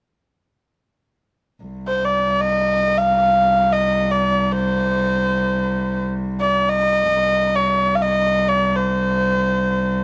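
Longing and soulful, this Turkish fragment, cut from a longer piece, opens with a bowed cello drone on a low C at 1.6 s, played sul tasto with a soft attack and a pure, floating tone. At 1.9 s a single kamancheh takes the melody between C5 and F5, its nasal, earthy voice colored by light vibrato and portamento and sitting a little louder than the cello. Both instruments sit up front in light reverb.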